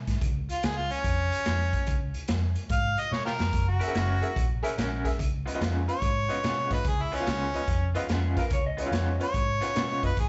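Heard as a live club gig through the venue's PA with a dull top end, this rollicking, swaggering electric blues shuffle in Db mixolydian swings at 145 BPM over a dark, foam-muted bass and a gritty, pumping garage drum kit that throws in a fill at 3.1 seconds, while an up-front harmonica solo with overdrive, slapback echo, scooped notes and tongue slaps leads from 0.5 seconds, a jangly tack piano and a twangy, tremolo-laced guitar riff join at 3.8 seconds, and a second compressed guitar line slips in briefly at 8.0 seconds as the chords move from Db to Gb7 and Db7.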